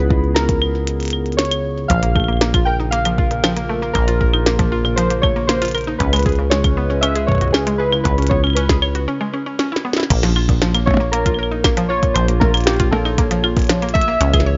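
Warbly, chorused lo-fi synth keys carry the melody from the start over a dark, detuned tape-like pad with 12-bit sampler grit in the background and a rubbery, saturated acid bass up front, setting an eerie, cerebral IDM mood in straight 4/4. A deep electronic kick and a glitchy kit of tiny snare, clicky hats, claves, crash and percussion blips join almost at once, both re-recorded in a small room, while a woody, bright mallet-like FM pluck adds delayed arpeggios from 1.9 seconds. A short break from 9.1 seconds and a drum fill at 9.6 seconds lead into a new section at 10.1 seconds, all under light reverb with a dulled top end, in a passage cut from a longer piece.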